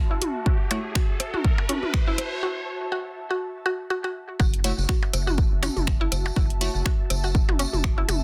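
Swung sixteenths drive this hypnotic, quirky minimal techno excerpt, where an electronic riser and an ethereal, airy pad with sidechain pumping open over a woody mallet-like synth pluck riff treated with chorus, phaser and dub echo, an overdriven analog drum machine of finger snaps and hi-hat, electronic toms and percussion blips, and an up-front, tape-warm kick, while crisp, warbling wavetable chord stabs flash briefly early on and return after the drop at 4.4 s, which brings in a rubbery square bass and a jingly tambourine.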